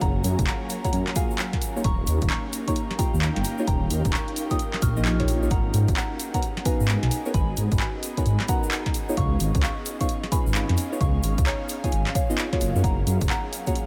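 This moody, skippy two-step UK garage excerpt moves at 131 BPM in 4/4 with a 64% 16th-note swing, sitting in G# dorian and drifting through F#maj7, D#7 and G#m11 chords. Up front, a dark detuned saw bass rumbles and beats with saturated depth, while a punchy, tape-coloured electronic kick and an analog drum machine supply handclaps, hi-hat and a punchy snare inside a short room, with a grainy egg shaker tucked in the background. Two ethereal, airy pads hold sustained chords and texture, one very quiet and mellow, the other warbling and vintage, its ensemble chorus and built-in reverb breathing with sidechain pumping. From 0.8 seconds a deep, nasal chord stab enters, full-bodied and softly decaying, roughened by 12-bit sampler grit and trailed by chorus and diffuse ambient delay. Above it all, a soft, pure FM bell carries the melody through chorus, phaser and diffuse delay, and the whole mix is soaked in a huge, dreamy reverb.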